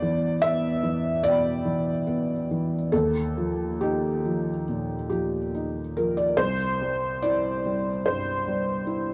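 This neoclassical minimalist piano piece is intimate and peaceful, moving at a slow 68-75 BPM in 4/4 with a rubato feel. A felt-muted upright piano plays alone throughout, ranging from C2 to B5 and sitting up front with a soft, mellow tone and audible action noise that adds to its closeness. The harmony moves from Em to Ebadd9 at 2.9 seconds and settles on C at 6.4 seconds. The instrument is tuned slightly flat, at A4 = 437 Hz, and carries the gentle character of cassette tape. A small room ambience frames this home recording, a short passage cut from a longer piece.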